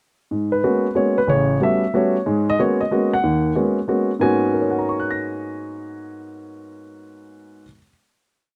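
Moody and late-night, this short jazz waltz moves at 185 BPM in 3/4 with a swung feel in G# minor, tuned slightly sharp to A4 = 441 Hz. A dark, mellow baby grand piano plays solo and sits up front, stating a bebop-style theme that returns over stride bass and close voicings, moving from G#m11 through A13 and back. Heard close and detailed in a dry room, the piece settles on a final chord at 4.2 seconds, with the piano ringing until 7.9 seconds.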